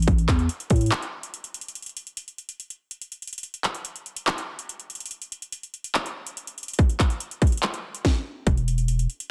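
The rhythm moves at 143 BPM in 4/4 with a half-time feel, and a trap drum kit of handclaps, hi-hat, kick drum and snare drum drives this short hip hop and trap cut from start to finish. The mood is menacing and eerie. The electronic, produced kit sits up front, with a hard-clipped kick, a sharp snare and metallic hats, all pushed through overdrive and re-recorded in a small room. A growling 808-style bass, buzzy, with a fast attack and a decaying sine body, sounds at the opening until 0.9 seconds, gives way to a break, and returns only at 8.5 seconds. The sound is dry, with little reverb, and sits in a dense, heavily limited modern master.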